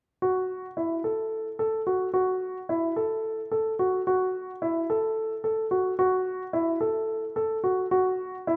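Contemporary instrumental in F# minor, this short excerpt from a longer piece moves in a restless, hypnotic 7/8 at 218 BPM counted in eighths, with a straight feel. A lone baby grand piano, worn in tone and placed up front, plays arpeggios within a narrow span from E4 to A4, its long sustain blooming into a moderate scoring-stage reverb. The piano sounds from 0.2 to 8.6 seconds.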